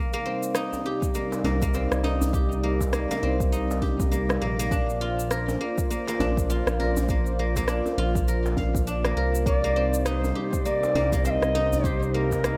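Meditative and earthy, this organic downtempo excerpt rests on a detuned, mellow analog pad with chorus and sidechain pumping, while a bright, silvery guzheng plays ringing fingerpicked arpeggios up front through tape echo. An electronic shaker and rim click, a deep electronic kick, a distant djembe with metal rattles under soft hands, and a smooth, dark sawtooth synth bass with ring modulation carry the swung groove over Cm7 and Bb chords. At 9.5 seconds a distant, expressive Native American-style cedar flute enters with woody vibrato and chiff, trailed by digital delay, the whole set in a light reverb.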